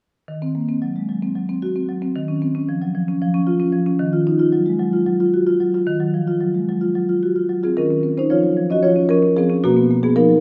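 A wet recital-hall reverb, heard from further back in the room, surrounds this reflective, flowing excerpt from a contemporary classical piece for solo marimba, whose woody rosewood bars, struck with medium mallets, unfold in a straight 7/8 from 0.3 seconds through rich minor and added-ninth harmonies before a new section begins at 7.8 seconds and turns to a major-seventh chord at 9.6 seconds.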